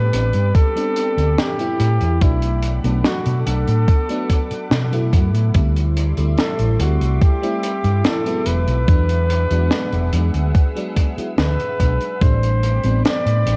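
Vaporwave at 72 BPM in A dorian, hazy and melancholic, this short excerpt sets a mellow flugelhorn melody with light vibrato and tape echo over a dreamy FM electric piano with a soft pad layer, treated with phaser and lush chorus, while a silky string machine holds sustained chords in the background. A round, dark hollow-body fingered bass sits up front with tube saturation, joined by a thumpy, sampler-style electronic kick from 0.5 seconds and a gritty fusion kit with a high-tuned snare and hi-hat in a pumping small room. The chords move from Am11 through Bm7, D9sus4 and E9 back to Am11, all wrapped in light reverb and cassette-tape character.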